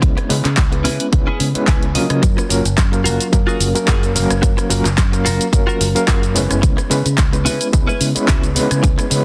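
Nu-disco at 109 BPM in F# major with a light 16th-note swing, this short feel-good, groovy excerpt moves between C#m7 and F#maj7 over a punchy, overdriven electronic kick sitting up front and an overdriven house kit of handclaps, hi-hat, rim click and shaker, both carrying the ambience of a large room. A round, dark fingered bass anchors the low end while an overdriven reed electric piano, reedy and up front through a combo amp, supplies accompaniment with fast tremolo, sidechain pumping, filtering and delay. A clean, compressed electric guitar picks a chorused riff throughout and slips in a brief fill at 1.4 seconds, all under light reverb and a dense, heavily limited modern master.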